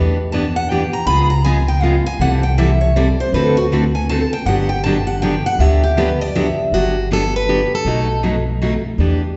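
A lively, charming swung waltz at 159 BPM in G major, this short excerpt of acoustic string swing opens with a picked steel-string dreadnought soloing over woody, thumpy gut-string pizzicato upright bass and a bright archtop second line until 6.7 s, when a boxy plugged-in archtop takes a brief melody; across the excerpt the chords move from Em7 through C#7, C6 and D7 to Gmaj7 and B7, all bathed in a church-like hall reverb with a rolled-off top end.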